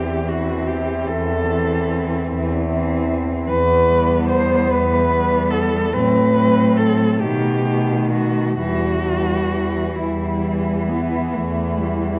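In a rubato 12/8 lilt of roughly 42-51 BPM, this solemn, yearning classical fragment for an ensemble of four muted cellos moves through E minor, settling from B7 onto Em at 8.6 seconds. Each cello is bowed con sordino with vibrato and a dark, veiled tone. The up-front melody sings between E4 and C5, the inner second line and the distant, soft-attacked accompaniment slide with portamento, and the smooth-topped bass anchors the lowest register. A wet recital-hall reverb surrounds the ensemble, and worn cassette tape adds a warbling pitch drift.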